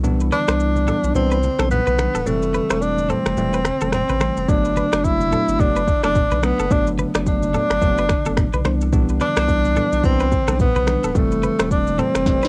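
Romantic and breezy, this afrobeats passage, cut from a longer piece, moves at 108 BPM in G major with a swung sixteenth-note feel. A bell-like tine electric piano carries the chords through Cmaj9, Fmaj7 and Gmaj9, its bright, clean tone softened by cassette tape grit and plate reverb, while a thick, saturated sine sub bass sustains deep underneath. The electronic afro-pop kit brings a deep kick, sharp snare, rim clicks, finger snaps and shaker, with low-tuned, thick-skinned congas tucked into the background. From 0.3 seconds a breathy tenor saxophone sits up front as the jazz-style solo voice, with vibrato, scooped notes and a soft attack bathed in plate reverb, and a twangy, compressed clean electric guitar picks a quiet riff through tape echo. The opening break runs until 4.5 seconds, and a drum fill at 12.3 seconds closes the passage, all captured as a home cassette recording in a booth with moderate ambience.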